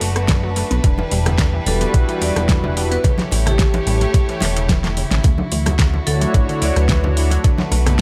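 A glossy, nasal chorused synth bass sits up front in this cosmic, sensual nu-disco excerpt at 109 BPM in E dorian, moving through Bm7, Em7, A7 and Dmaj9 alongside a thumpy electronic kick and a tape-warm pop drum kit with a fat snare, metallic hats and rim clicks, with a drum fill at 4.4 seconds. A rich chamber violin section holds sustained chords and a bright, detuned unison pluck plays arpeggios with tape echo, both pumping against the kick, while a smooth, chorused analog pad fills in from 0.4 seconds and ringing congas sit in the background. A vibraphone struck with hard mallets carries a metallic melody from 1.7 seconds through tape echo, and the mix stays dry and close.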